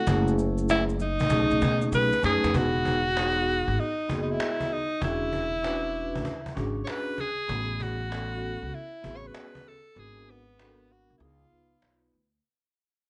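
Smooth and cool, this short jazz-hop clip from a longer piece rides a swung hip hop groove. An edgy alto saxophone carries the melody up front, its jazz-style solo colored by vibrato and scooped notes, while a vibraphone played with soft mallets fills in mellow, airy chords shimmering with a slow motor vibrato. Beneath them, a growly pizzicato upright bass anchors the low end, and a distant cajon in a large room keeps time with hard hands and a gritty vintage 12-bit sampler texture. Maracas and congas sit compressed in the background only until 2.5 seconds, just after a brief drum fill, when the harmony settles onto lush major and dominant colors and the track begins a gradual fade-out. A break arrives at 10.0 seconds as the chords turn darker on the way out, all under light studio reverb with a softened, rounded top end.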